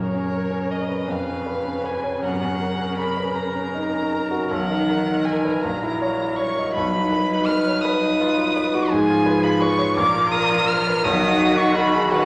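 A dark, woody violin carries the melody up front, its single bowed line colored by vibrato throughout this slow, elegiac classical movement for piano quartet. A baby grand piano supplies the accompaniment with a natural tone and long sustain, sitting close and prominent. A warm viola adds a smooth, even accompanying voice with vibrato, heard at a distance, while the cello sings a rich second line shaped with soft attacks, portamento and expressive vibrato. All four parts play together for the full 12.2 seconds, moving in 6/8 with free rubato through a chain of changing chords that deepens the melancholic mood. A wet recital hall reverb surrounds the ensemble, and the passage is cut from a longer piece.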